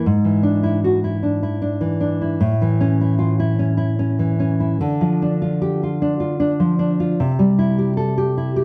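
A dry, close 1970s-style studio sound with light reverb frames this short, passionate and wistful cut from a longer romantic piece for solo classical guitar in a rubato 3/4, where an up-front nylon-string guitar with a dark, woody tone of old strings and a thumb-plucked touch, touched with slapback echo, moves through E7/G#, A, Dm and C across 8.6 seconds.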